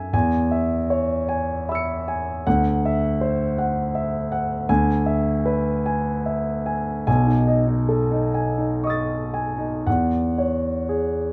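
A concert grand piano plays alone for the full 11.3 seconds, its deep bass, open tone and long sustain placed up front across a span from B1 to C#7. This hazy, dreamy impressionist classical piece moves in a slow, rubato 6/8 at 38-55 BPM in dotted quarters, tuned to A4 = 439 Hz. The harmony drifts through E6, D9, E/D, B13 and E69, captured by close, detailed microphones with light reverb in a passage cut from a longer work.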